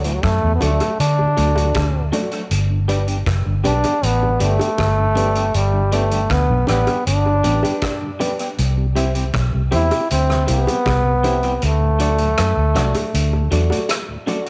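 Roots reggae at 79 BPM in G major, this sunny, uplifting passage puts a clear trombone melody with light vibrato and dub echo up front over a dark, round, foam-muted electric bass. Behind them, a barky, lightly overdriven reed electric piano plays stabs, while a slightly broken-up electric guitar with tube saturation and dub echo and a very quiet, mellow tonewheel organ with key click and rotary speaker fill in the accompaniment; high-tuned bongos played with soft hands join at 0.6 s. A vintage drum kit with a tight kick, rim click, hi-hat and tape echo keeps time until the kick drops out at 11.6 s, as the chords move from D through G and C back to D in a light studio reverb.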